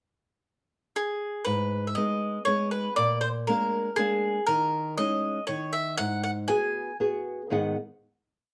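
A bowl-back mandolin opens this short, wistful and passionate Italian folk serenade at 1.0 s, its picked double strings singing motif-based song phrases up front through a plate reverb, before a dark, small-sounding nylon-string guitar enters at 1.5 s with fingerpicked bass notes and oompah chord figures in a straight 3/4 at 119 BPM in G# minor, the pair sharing a moderate studio room until the guitar's last chord ends at 7.8 s.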